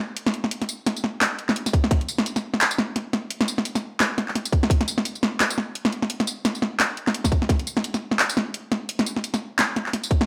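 Cinematic and heavy, this short cut from a longer drum and bass piece runs at 172 BPM in 4/4 with a half-time feel and a 57% swing on the sixteenths. A layered, produced drum kit carries the track from 0.2 seconds to the end, bringing a cracking snare, bright hi-hats, handclaps and tambourine, all overdriven and set up front. An electronic kick drum punches in at brief moments, first at 1.7 seconds, with a tight, overdriven attack that also sits forward in the mix. Both drum parts share a studio reverb, while the overall room carries only a light reverb. The result is a percussion-only passage that feels gritty and heavy.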